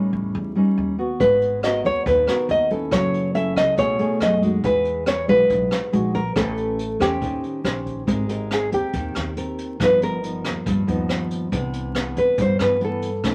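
A straight 4/4 bossa nova pulse moves along at 140 BPM, romantic and breezy in mood, in this fragment cut from a longer piece. Two classical nylon-string guitars sit up front: one carries the melody with a thumb-plucked tone, while the other plays a full-bodied accompaniment with audible finger squeak. A pizzicato upright bass with steel strings gives a woody, thumpy low end, and a jazz brush drum kit joins at 1.2 s with hi-hat, punchy kick and rim click, sounding distant and roomy as if in a small room. The harmony is rich in extended chords, moving from A7#11 through G#m9, B13 and Emaj9 before turning to Abmaj9, G7alt and Cmaj9 in the second section, where a nylon-string guitar takes a solo from 8.1 s. A moderate studio ambience surrounds the players, and a layer of vinyl crackle lends the recording a crackling surface.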